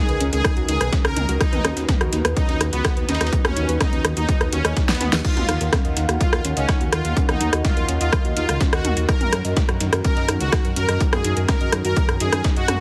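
A dry, heavily compressed, radio-like mix carries this hypnotic, melancholic melodic techno cut in Eb minor at 125 BPM, where a punchy, overdriven kick and an up-front deep house kit with fat snare and metallic hats, joined by a gritty, pitched-up breakbeat layer and a drum fill at 4.9 seconds, sit alongside a rumbling detuned saw bass, while a smooth supersaw melody with dub echo, a round background pluck arpeggio with tape echo, a moody chorused pad and a nasal, string-like drone move through Dbsus2, B, Ebmadd9 and Gb.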